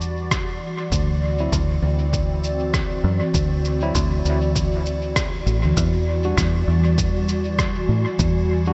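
A round, foam-muted fingered electric bass sits up front with tube saturation, anchoring this deep, spacious ambient dub excerpt at 99 BPM in E minor with a 16th-note swing, while a dark, detuned organ-like pad with a slow attack holds sustained chords that move from Em9 to D9 and return to Em9 at 5.8 seconds. A punchy, overdriven electronic kick enters at 0.3 seconds alongside a muffled, pitched-down shaker and rim click sent through dub echo, and at 1.4 seconds a worn, slightly out-of-tune tine electric piano adds echoing stabs from the background. The dreamy mix is soaked in a huge ambient reverb with a long tail, and its top end is rolled off.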